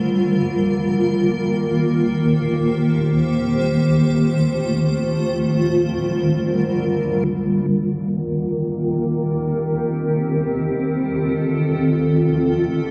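Blissful and dreamy, this hip hop passage from a longer piece floats in free time in Eb Lydian as a lone granular cloud pad, blurred, detuned and full-bodied with slow-attack sustained tones from Eb3 to C5, sits up front through built-in reverb, analog delay and a low-pass filter that sweeps from 7.2 seconds, cycling through Ebsus2, Cm7, F7 and Gm7 in an echo-heavy mix with light reverb and digital ambience.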